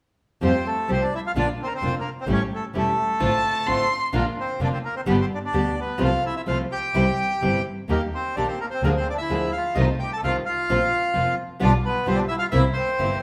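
A rubato 4/4 pulse at 129 BPM carries this elegant, passionate tango excerpt in F major, cut from a longer piece. The reedy, bright bandoneon sits up front with the melody from 0.4 seconds, its airy tone ranging from A3 to A5, while a fingerpicked nylon-string guitar supplies accompaniment with a deep classical character and audible finger squeak. Beneath them, a single bowed double bass gives a dark, woody, distant foundation with vibrato, and a chamber string section of gut-string tone and light vibrato adds period-style stabs in the background. Briefly, from 3.2 to 4.0 seconds, a bowed solo violin steps forward with a second line, expressive and full of portamento. The harmony moves through chords such as Fadd9, A7, Dm7/A, Eb and Bb7/D before closing on C7, all set in a large studio reverb with a 1.4-second decay.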